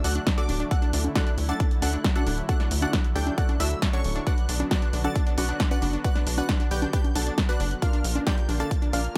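Uplifting trance at 135 BPM in D major, soaring and uplifting, with a detuned unison pluck melody carrying dub echo over a delayed pluck arpeggio on D4, a high supersaw stab line and a thick, warbling pad with chorus and vintage 12-bit grit, all pumping against a tight sawtooth sequencer bass, punchy analog drum-machine congas, hi-hat and snare, and an up-front layered electronic kick entering at 0.3 s, while a barely audible downlifter sounds until 0.7 s as the chords move from D to Bm to Bbmaj7 in a dry mix.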